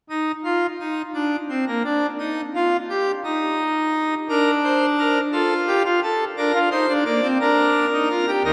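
Elegant and joyful, this baroque-style classical fugue in three parts, in a straight 6/8, is played by a solo pipe organ on full organ, its mixtures giving a majestic, brilliant tone with a romantic voicing that sits up front. The short excerpt opens with an unharmonised line before the harmony arrives on Bb/D at 4.3 seconds, moving through F and back to Bb/D, with the organ sounding from 0.1 to 8.5 seconds. A long, wet cathedral reverb surrounds the instrument.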